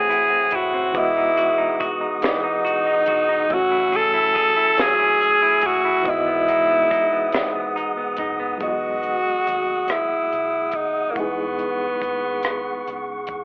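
Sensual and tender, this slow six-eight R&B fragment in E major moves at 47 BPM, its raspy, gritty tenor saxophone singing the melody up front with light vibrato and scooped notes over a hazy cassette-tape, telephone-like home-recording sound with light reverb. A clean, compressed semi-hollow electric guitar carries a second line until 9.2 s, while a reedy, worn and slightly out-of-tune electric piano shimmers with fast tremolo, and a soft, flute-like tonewheel organ holds sustained chords through a fast rotary speaker. A compact cocktail kit with a high-tuned snare, tight kick, rim clicks and hi-hat keeps a dark, rolled-off pulse, and a round, foam-muted fingered bass joins at 0.5 s in the background as the harmony drifts from Am6 to Emaj9 and F#m9.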